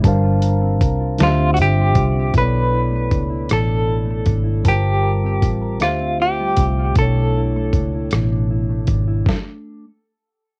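Yearning and sultry, this slow six-eight R&B excerpt at 52 BPM moves through Gm11, Dm11 and Bm11 chords, with a dusty, gritty sampler-style drum kit with a thumpy kick, a dark, foam-muted fingered electric bass up front, a mellow tine electric piano and a background electric guitar under a clean, dark lead guitar with tremolo that enters at 1.2 seconds, all with the intimate, dry feel of a home cassette recording before a stop at 9.3 seconds, after which the lead guitar carries on to the end.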